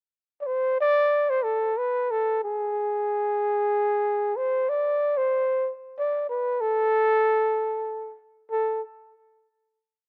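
A breathy, dark cornet plays alone from 0.4 to 8.8 seconds, shaping a bittersweet, soulful klezmer melody in free time and A harmonic minor, its whispered, intimate tone carrying light vibrato, soft attacks, scooped notes and modal ornaments with a jazz inflection between G#4 and D5, heard up front in an outdoor setting touched by light reverb.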